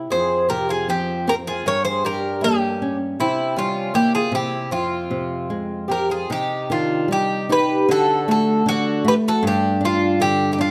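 A bright, fingerpicked flamenco guitar with audible finger squeak opens this longing, mournful fado-style ballad in a rubato 78 BPM, joined at once by an up-front metallic Greek bouzouki carrying the melody on its double strings and a softer, boxy, shimmering twelve-string acoustic guitar picking a swung second line, all set in a moderate recital hall reverb with close, detailed miking as the harmony moves from F harmonic minor to C harmonic minor at 6.3 seconds.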